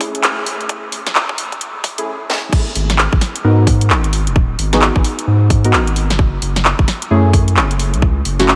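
This is a UK garage clip in the two-step style, running at 131 BPM in 4/4 with a swung sixteenth feel, soulful and late-night in mood and set in G# phrygian. An up-front electronic kick with a tight, tape-warm punch and a layered garage kit of cracking snare, handclaps, hi-hat and crash cymbal drive a short build-up that peaks with a drum fill. A deep, mellow chord stab enters at 2.0 seconds, dark and full-bodied with detuned sawtooth and triangle tones, colored by chorus, cassette tape character, a filter sweep and a diffuse ambient delay. The drop lands at 2.5 seconds, moving from Amaj7 to G#m9 and later F#m9, and a thick, saturated sine sub bass joins up front at 2.8 seconds. The whole mix is dreamy and soaked in a cathedral reverb, with vinyl crackle adding a hazy, nocturnal texture to this fragment of a longer piece.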